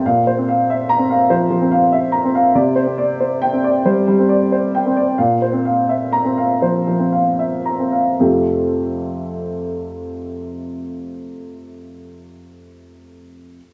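A lone upright piano opens on a Bbsus2 chord, its woody, slightly detuned, boxy tone placed up front in a small room with moderate studio reverb. This hopeful, peaceful neoclassical minimalist passage, taken from a longer piece, moves in free rubato across a range from F2 to Bb5, passing through Csus2 and back to Bbsus2 while slowing down between 1.3 and 8.2 seconds. At 8.2 seconds a new section begins and settles on Fadd9.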